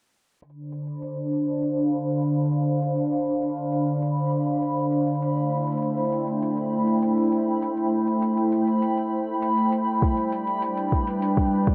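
A faint, metallic electronic hi-hat opens this eerie, intricate IDM fragment at 100 BPM in D dorian, joined at once by an up-front, glassy FM pad holding chorused, reverberant chords from Dm7 to Am7 to G through a lo-fi 12-bit grit and a long filter sweep, while a reversed, detuned swelling texture drifts in high above at 1.9 seconds and a soft, overdriven kick drum arrives at 10.0 seconds.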